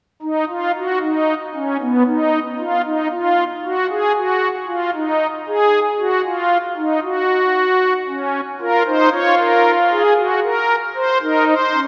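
A pipe organ playing on its strings celeste stops carries this solemn, baroque-style three-part fugue alone from 0.2 seconds, its soft, shimmering tone set up front in a romantic voicing. At a slow 57 BPM in straight 4/4, the serious lines move through a middle register before the harmony settles on B-flat minor over D-flat at 8.1 seconds and G-flat at 10.2 seconds. A deep church reverb lingers around the sound, and the passage is cut from a longer piece.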